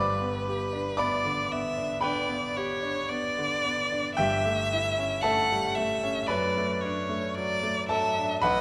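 A rich, expressive solo violin and a clear, deep-bassed concert grand piano begin together in this lyrical, romantic classical duo, with the bowed violin carrying the melody over the piano's smooth accompaniment at a slow 56 BPM in 4/4 with a rubato feel. Both instruments sit up front, the violin's soft attack, vibrato and portamento set against the piano's vintage tone, while the harmony moves from G to A7/G at 4.2 seconds and settles on D/F# at 6.3 seconds in D major. A wet scoring-stage reverb surrounds this brief passage, which is cut from a longer piece.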